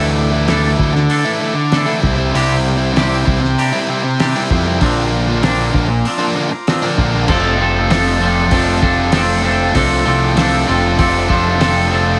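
A straight 4/4 pulse at 97 BPM drives this jangly, wistful indie rock excerpt, where a biting, up-front overdriven guitar riff and a twangy, scooped clean guitar bathed in lush chorus and analog delay ride over growling overdriven picked bass and a cloth-damped, muffled drum kit with a fat snare and dark cymbals entering at 0.5 seconds, while a buzzy vintage combo organ holds plate-reverbed chords in the background until 7.3 seconds, as the harmony moves from Dsus2 through Cadd9 and Bbadd9 to F6.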